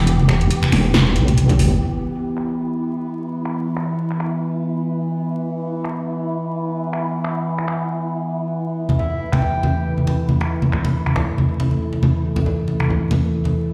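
Deep dubstep with a heavy, brooding half-time feel, where a resonant, ring-modulated drone with moving overtones and a dark, wind-like noise texture hold for the whole cut while a saturated, detuned wobble bass stops at 1.8 s, ringing hard-hand congas sit up front, an overdriven deep house kit with punchy snare, metallic hats and finger snaps plays through a large room, and a breathy flute-like lead with vibrato and dub echo appears briefly at 9.0 s, all wrapped in a lush hall reverb and vinyl crackle.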